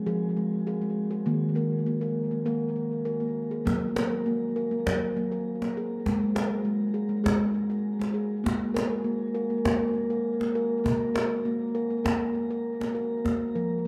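A steel tongue drum played with soft rubber mallets rings out round and pure in gentle, hypnotic arpeggios through tape echo and shimmer reverb, joined at 3.7 seconds by a distant, woody cajon with faint snares in this dark, meditative world excerpt at 100 BPM, moving from Fm through Gb to a closing Bb5.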